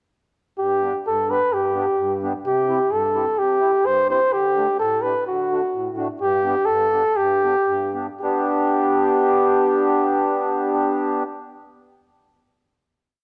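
From 0.6 s a flugelhorn and an accordion enter together in a short, jolly, festive alpine folk dance in a two-beat metre. The warm, up-front flugelhorn carries a motif-based melody in period phrases, with vibrato, a smooth top and a jazz-style touch. Beneath it the reedy, mellow accordion plays off-beat triad chords with a slow-beating tone chamber, before the piece slows from 6.2 s into a held final chord at 8.2 s, all set in a dark production with moderate recital hall reverb.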